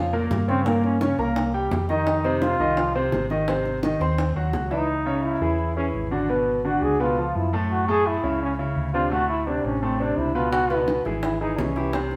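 Driving and sultry, this fragment of Afro-Cuban jazz features a breathy, vintage-toned trombone soloing up front with vibrato and scooped notes over a deep-voiced concert grand piano, a dark, amped hollow-body electric bass and low-tuned, saturated bongos played with hard hands that drop out at 4.9 seconds and return at 10.5 seconds, all captured as a band playing live in a reverberant stone room.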